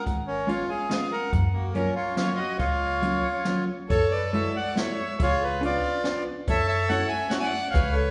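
A whirling, charming musette waltz in 3/4 at 141 BPM with a rubato feel, moving from F# major to F# minor at 3.9 s, where a reedy, up-front accordion carries the melody over a dark, distant bowed violin with vibrato on the second line, a thumpy pizzicato upright bass, a clean, compressed hollow-body electric guitar picking the accompaniment and a brushed jazz kit with a high-tuned snare and boomy kick, the ensemble set in the wet reverb of a church or concert hall.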